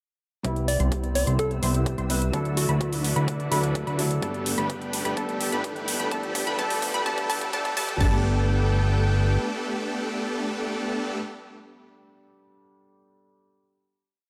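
Euphoric and anthemic, this festival progressive house piece in G major moves at 127 BPM in a straight 4/4, rising through a build-up before settling on a sustained final chord at 8.0 seconds. An overdriven, punchy electronic kick drives a four-on-the-floor pulse with a big-room kit of metallic hats, backbeat and crash; a very quiet riser slips in beneath, and the kit then gathers into a drum fill. Huge, detuned supersaw chords carry the dotted-rhythm riff up front through a filter sweep and digital delay. A fat, saturated analog bass and a punchy unison pluck doubling the chords an octave higher both pump with the sidechain, while a lush, chorused pad sustains in the background. Early on, a round, warbling FM lead with a vintage, keys-like tone offers short phrases. A soft, felt-muted upright piano with audible action noise holds intimate chords with syncopated pushes, lingering alone to the close at 14.3 seconds under light reverb.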